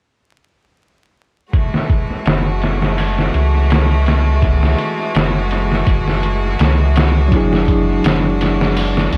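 This brooding, smoky trip hop excerpt at 83 BPM in F# minor opens at 1.5 s with a rich, earthy chamber string section holding sustained F#m9 chords with light vibrato. Alongside it plays a muffled, pitched-down sampler-style drum kit, up front and overdriven with analog delay, built on a thumpy kick and a medium-tuned snare. A deep, round sine sub bass with tube saturation arrives at 2.3 s, and at 7.3 s a mellow tine electric piano with tremolo and tape echo joins as the harmony moves to E9/F#, all set in an echo-heavy mix with light reverb, digital ambience and vinyl crackle.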